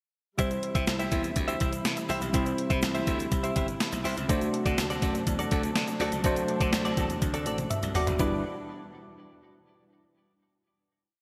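At 123 BPM in a straight 4/4, a clean 12-bit digital drum machine drives this short 1980s-style pop piece with an overdriven sound: a thumpy kick, a medium-tuned snare on a big backbeat, plus hi-hat and toms, all treated with gated reverb and sitting up front. Beneath it a glassy slap bass plays a growly, punchy, syncopated pop-funk line with slides and chromatic approach notes, while a grainy tube shaker ticks out sixteenths in the background. A direct-recorded clean electric guitar plays a picked, compressed funk-style riff through lush chorus and digital delay, and a worn, slightly out-of-tune tine electric piano holds phased chords with short fills. A dark studio string section, bowed sul tasto with vibrato, lays a woody, sustained pad low in the mix. The uplifting, romantic pre-chorus moves from C to D7, a drum fill arrives at 7.2 seconds, and the piece resolves on a G6 chord at 8.2 seconds, all wrapped in a bright 1980s-style digital production with a moderate hall reverb.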